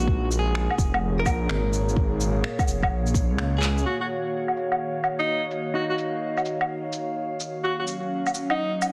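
A dense, heavily limited modern mix sits in a moderate recital-hall reverb, giving this rainy, melancholic future garage fragment a damp, enclosed glow. A bright, twangy clean electric guitar roughened by 12-bit sampler grit and analog delay plays accompaniment over an airy, breathy chorused pad, while a menacing, saturated detuned saw bass pumps alongside a deep layered kick beneath swung, up-front electronic percussion of shaker, snaps, woodblock, handclaps and cabasa. The kick drops away at 3.3 seconds, a drum fill follows at 3.6 seconds and the bass ends by 3.8 seconds, and then a clear, distant alto saxophone with jazz vibrato takes the melody from 3.9 seconds as filter sweeps move across the drums and guitar.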